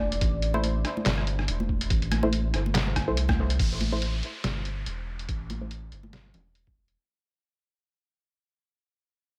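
Deep dubstep with a heavy, meditative mood, this half-time excerpt with a light swing sits on a single A minor chord and is cut from a longer piece. It opens on a drop, with a round, soft sub bass up front holding the low end throughout, while a moody sawtooth-and-triangle analog pad with chorus and phaser hovers in the background until 3.6 seconds. A sampler-style trip hop kit of handclaps, hi-hat, rim click and a medium-tuned snare sounds pitched down and muffled, re-recorded in a small room and placed up front, joined by a thumpy, compressed electronic kick. Filtered chord stabs, detuned and mellow with a short plucked decay, carry chorus and dub echo, and saturated congas struck with hard hands ring out in the background through their own dub echo. A band accent lands at 3.3 seconds before the music fades out, as an electronic downlifter enters at 3.6 seconds and runs to the end, all set in a digital ambience.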